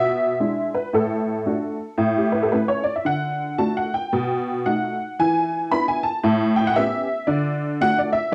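Swinging eighths at 114 BPM in 4/4 drive this playful, exuberant stride-piano jazz fragment in D major, cut from a longer piece, where a detuned, jangly, woody honky-tonk upright piano plays solo and up front through chords such as E7, B7 and A9, set in a wet studio reverb and captured as a home recording on cassette.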